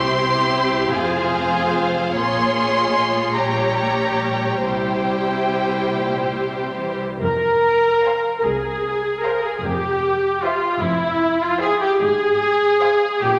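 Classical, a slow romantic movement for string orchestra in F minor, drifts in 6/8 at 45-52 BPM with a rubato, yearning and melancholic feel, heard as a fragment of a longer piece. One violin section carries a focused, smooth-topped melody with vibrato while a second violin section shapes an expressive, soft-attacked second line up front, over an even, lightly vibrated viola accompaniment that also sits forward, a close cello bass in the background and a lush bowed double bass beneath. The harmony moves from C through Fm and Bbm7 to Gdim/Bb in the opening section, then settles back to Fm at 7.2 s, and the strings stop at 13.1 s and 13.4 s inside a wet concert-hall reverb.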